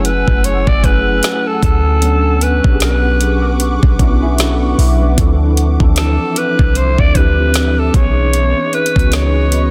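A swung 16th-note groove at 76 BPM in 4/4 drives this sensual, late-night contemporary R&B excerpt in F# minor: an up-front electronic drum kit with a knocking kick, woody snare and metallic hats sits over a deep, boomy, sine-like 808-style bass. A mellow tine electric piano with ensemble chorus and an ethereal, airy pad with reverb and sidechain pumping carry the F#m9, Bm9, Dm9 and C#m9 chords, while a breathy, raspy, growling alto saxophone with vibrato and tape echo leads the melody and a thumb-plucked flamenco guitar adds brief echoed arpeggios from 4.2 to 5.4 seconds, all within a dense, heavily limited modern master.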